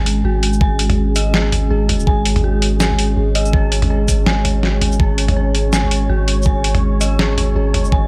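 Lightly reverberant and brooding, this cinematic clip of dark half-time drum and bass opens on a deep, detuned sawtooth pad with a sub octave and slow attack, pumping under sidechain, while an eerie, inharmonic FM bell traces chorused, phased arpeggios through tape echo. A long, mellow sine 808 bass sits up front, and a gritty, pitched-down sampler kit of hi-hat, shaker, medium-tuned snare and toms carries a swung, tape-warm feel in a small room. At 0.6 s an overdriven, knocking electronic kick joins, its produced punch re-recorded in the same compact space.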